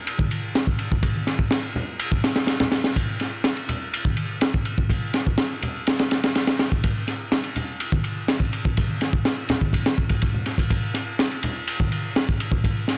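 Breakbeat at 124 BPM in a straight 4/4, this energetic, funky fragment cut from a longer piece pairs an up-front, saturated drum kit with a punchy kick, high-tuned snare, dark ride cymbal and a rolled-off top against low-tuned, thick-skinned congas played with soft hands, all caught in a dry, gritty small-room recording.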